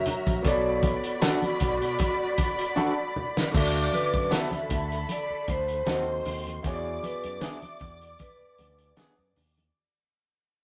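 Silky and smooth, this lush 1970s-style soul excerpt at 77 BPM sets a ringing vibraphone melody over a dark, woody bowed string section, clear concert grand piano, a fat-snared soul drum kit, soft background congas and a punchy fingered electric bass, while a slightly broken-up, lo-fi electric guitar riff enters at 1.2 s and a drum fill leads into a fade-out at 3.5 s, all captured as a rough rehearsal-room recording with tube saturation and stone-room reverb.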